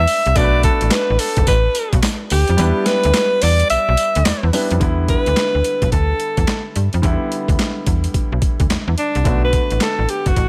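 A swung 16th-note new jack swing groove at 108 BPM drives this confident, punchy R&B excerpt in E minor, built on a gritty, compressed, pitched-down sampler-style kit with a thumpy kick, high-tuned snare, handclaps, hi-hat and tambourine, whose kick drops out from 2.6 to 4.8 seconds. Up front, a snappy FM bass with a metallic attack locks the low end, while a polished baby grand piano comps through Bm7 and Em7 changes. Over it all, a clear alto saxophone carries the solo melody in jazz style, with light vibrato, soft attacks and scooped notes, and the whole mix sits in a digital ambience.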